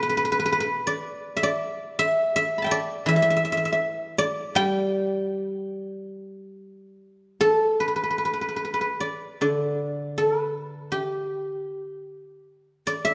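A guzheng played with fingerpicks carries this pastoral, elegant Chinese traditional piece on its own from 0.0 to 13.1 seconds, its silvery, ringing tone sitting up front and spanning a broad register. The rubato phrasing moves with a gentle, free-flowing sense of time, shifting into a new section at 7.8 seconds. A moderate, spacious stage reverb surrounds the acoustic instrument in this short cut from a longer work.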